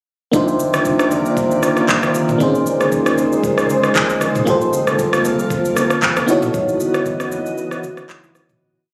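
Deep, hypnotic amapiano at 116 BPM with a 16th-note swing, where a bell-like, warbling FM electric piano holds chorused chords with grace notes over an ethereal, sidechain-pumped pad drifting through Cm11, Bbm11, Gm11 and Dbm11, a softly vibrato bassoon sustains bass notes until 4.4 s, an up-front electronic kit with a knocking kick, steady shaker, syncopated rim, handclaps and toms drives the groove alongside thin-skinned, saturated congas in the background, and the whole piece, heard as if captured on a phone in a reverberant club, fades out from 6.5 s into a closing break at 7.6 s.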